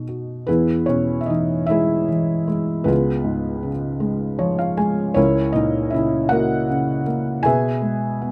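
A felt-muted upright piano plays alone from the start, its muted, intimate, vintage tone sitting up close in a dry, detailed sound. This short fragment of a longer, wistful and melancholic classical solo piece moves in 6/8 with rubato and uneven beats, passing through shifting harmonies. A brief piano fill arrives at 4.0 seconds before the phrase settles toward its close at 8.3 seconds.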